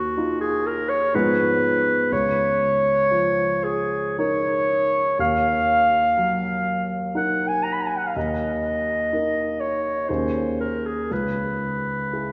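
A mellow, distant clarinet sings a wistful solo melody over a deep-bassed concert grand piano in this hazy, impressionist classical duo fragment, moving in a rubato 3/4 at around 60 BPM through shifting chords like G#m6, C#69 and A#m11/D#, all bathed in a long church reverb with a soft, rolled-off top end.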